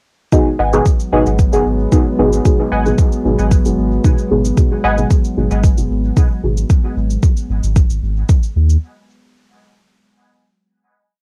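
Dub techno at 113 BPM in G# minor, cavernous and hazy, built on an up-front four-on-the-floor electronic kick, a faint programmed cabasa and a round, soft sub bass playing off-beat notes under a single G#m7 chord. A dark, detuned chord stab with chorus, phaser and dub echo moves one shape in parallel through a dotted rhythm, while a muted, filtered sawtooth stab adds sparse echoing chords from 0.6 to 5.0 seconds and a filter sweep runs across the stab. A warbling, nostalgic tape-like pad with slow attack and built-in reverb sustains beneath, everything carrying the lo-fi grain of a home cassette recording with light reverb, and the kick drops out at 8.4 seconds.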